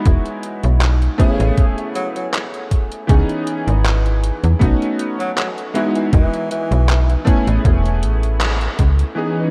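Vaporwave at 79 BPM with a light 16th-note swing, dreamy and faded, its mix soaked in church reverb, cut from a longer piece. A clangy, chorused electric grand piano and a snappy, metallic FM slap bass carry the Emaj9, Amaj7 and C#m9 changes, over a thumpy, overdriven electronic kick and a detuned 8-bit drum machine whose handclaps and low-pass filtered hi-hats sound re-recorded in a small room. A bright tenor saxophone with vibrato sings a short solo line from 1.2 to 7.1 seconds, the band hits an accent at 8.4 seconds, and a silky string machine slips in at 9.3 seconds just as the clip closes.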